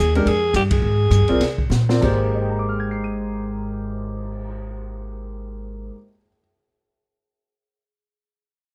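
A swung 4/4 pulse that slows over the first 2.0 seconds carries this spiritual, hypnotic modal jazz excerpt: a raspy, growling alto saxophone with scooped notes and plate reverb sings the melody up front until 1.7 seconds, a woody, thumpy pizzicato upright bass anchors the low end, a natural-sounding grand piano supplies accompaniment, the band hits an accent at 0.7 seconds, and a dark, small-room drum kit with a boomy kick and high-tuned snare plays a fill to close the opening section.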